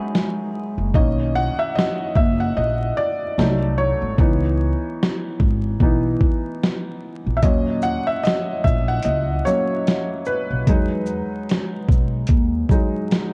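A felt-muted upright piano, soft and intimate with audible action noise, carries the solo throughout this dreamy, nostalgic lo-fi hip hop excerpt at 74 BPM with a swung feel, as a slightly broken-up electric guitar with tape echo sounds briefly at the start, a gritty, overdriven sampler-style drum kit with a thumpy kick and fat snare enters at 0.1 seconds, and a woody pizzicato upright bass joins at 0.8 seconds, all within a dark production with vinyl crackle and light reverb over chords moving from Emaj9 through Bmaj7, Cdim7, C#m7 and D#m7 back to Emaj9.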